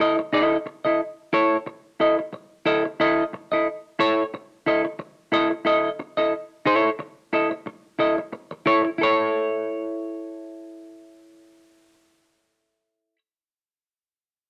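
Hypnotic and funky, this short excerpt from a longer funk piece features a single semi-hollow electric guitar playing a clean, dark, fingered accompaniment on an A/E chord with a lightly swung sixteenth-note feel, sitting up front with a lush chorus in a moderate club reverb, and it plays from 0.0 to 13.2 seconds, with a new section arriving at 9.0 seconds.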